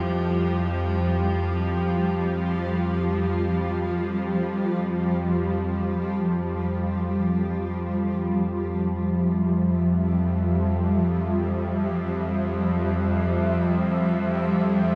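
A tense, string-like bowed drone with a bright, detuned edge and vibrato sits up front from F2 to F3 beside a cloudy, evolving granular pad holding an Fsus2 chord, while a metallic, nasal, inharmonic drone with chorus hovers eerily in the background, all in free time across this cavernous, desolate dark ambient drone piece bathed in huge reverb with a dark, warm production.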